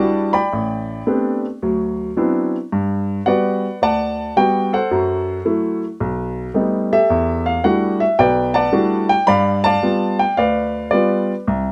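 Close, detailed and nearly dry, this short excerpt puts a warm, natural baby grand piano up front for a sophisticated, relaxed bit of solo jazz at 110 BPM in 4/4, swung on the eighths and tuned slightly sharp to A4 = 444 Hz. Ranging from A1 to B5, the piano moves through rich extended harmony in G major, from Em9 and Am11 through D13 to Gmaj7, then F#m7b5 and B7b13. At 7.1 s it turns to E minor on an Em11 before reaching G7 at 9.3 s.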